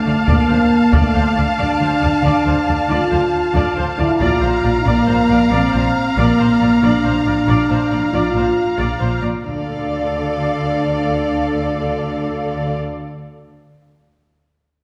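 Epic orchestral film score in a straight 12/8, heroic and relentless, moving from D minor to Bb and back, heard as a short cut from a longer piece. A dark, soft-attacked French horn section holds sustained chords over lush bowed strings, with a focused violin section carrying a second line, rich violas filling the accompaniment, and cellos and double basses anchoring the bass. A taiko ensemble plays with heavy sticks until 5.0 seconds, all set back in a wet scoring-stage reverb.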